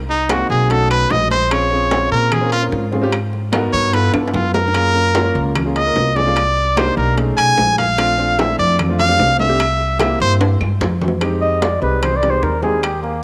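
A brilliant, punchy trumpet solos up front with light vibrato and scooped notes in this fiery, sultry Afro-Cuban jazz excerpt, over a woody pizzicato upright bass, an intimate grand piano with audible action noise, ringing congas and metal-shell timbales in the background, tight high-tuned bongos and vintage claves, with drum fills at 4.1 and 10.4 seconds, before a smooth-topped flugelhorn with slapback echo takes over at 11.4 seconds, all in the bloom of an echo-chamber reverb.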